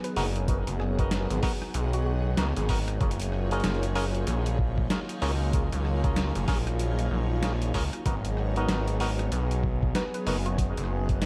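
Vinyl crackle and a light digital ambience frame this swaggering, playful glitch hop cut at 95 BPM, swung on the sixteenths in G# dorian, where a saturated, up-front synth bass with a sawtooth bite sits under a thumpy, pitched-down electronic kick and a tape-toned, sampler-style boom bap kit of hi-hat, rim click and medium-tuned snare, both drum parts dressed in studio reverb. Twangy clav stabs run through a combo amp with auto-wah, delay and sidechain pumping, while a chorused analog pad carrying 12-bit sampler grit and a blurred, evolving granular cloud pad with its own reverb breathe with the pump in the background over G#m7, F#maj7 and back to G#m7 at 8.1 seconds. A very quiet, woody wave-folded pluck adds a mellow melody only from 0.0 to 2.2 seconds and again at 10.0 seconds.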